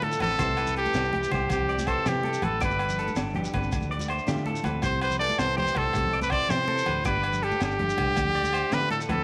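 A bright trumpet with vibrato carries the melody up front in this carefree, joyful highlife guitar band excerpt, set in C major at 108 BPM in a straight 12/8. Beneath it, a clean, compressed semi-hollow electric guitar plays arpeggios in the same register, coloured by spring reverb and tape echo. A fingered electric bass adds a round, amped low end, while a fingerpicked flamenco guitar sits in the background with warm accompaniment. The percussion stays behind the other parts: a gritty, saturated breakbeat kit with a high-tuned snare and punchy kick, bright soft-handed congas, a grainy shekere and ringing agogo bells. The chords move from C to G to Dm7 and back again, and the whole cut, lasting about 9.2 seconds, sits in a light, small-room ambience.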